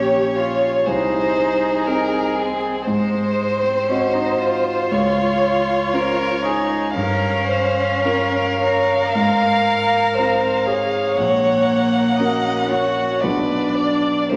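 A bowed violin carries the melody from the opening moment, rich and focused with vibrato and a smooth top. Alongside it from the start play a second violin, cello and concert grand piano in a slow, yearning romantic movement for piano quartet at 59 BPM in 4/4, played with a rubato feel. The second violin sits close and softer, its tone also rich, focused and sung with vibrato. The cello adds a distant, even second line in the middle register. The piano sits up front as accompaniment, with deep bass and long sustain reaching down to Bb1, its chords moving through Ab7, Dbmaj7 and Gm7b5 before arriving on Bdim7 at 13.2 seconds. A recital hall reverb and a vinyl crackle give the melancholic passage, cut from a longer piece, an aged, spacious air across its 14.4 seconds.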